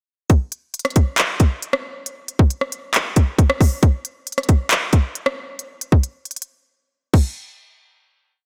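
A light reverb surrounds this short, dark and melancholic hip hop piece, where an up-front electronic trap drum kit carries a half-time beat at 136 BPM in 4/4. The hard-clipped kick, crisp hats with fast hi-hat rolls, handclaps, rim clicks and crash cymbal drive the hook from 0.3 seconds. The drums drop out at 6.5 seconds before the piece closes on a final hit from 7.4 to 8.5 seconds.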